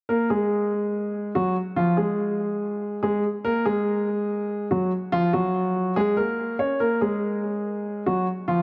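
Hip hop with a menacing, ominous half-time feel, this short cut from a longer piece features only a warm concert grand piano playing the melody from 0.1 to 8.6 seconds, up front with deep bass and a natural tone, its notes trailed by tape echo and set in a lush hall reverb within a dark production, while the harmony circles between Gbadd9 and Fm before settling onto Gbmaj9/F and back to Gbadd9.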